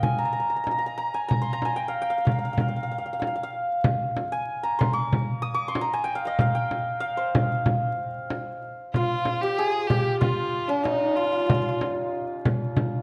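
A straight 4/4 pulse from a small, dry frame drum played with soft hands sits up front beside the shimmering, ringing hammered santur melody in this soulful, melancholic Persian modal ensemble excerpt, and a single bowed violin with a nasal, boxy vibrato adds a quieter second line from 8.9 s to 11.8 s, all set in a moderate recital hall reverb with close, detailed microphones and vinyl crackle.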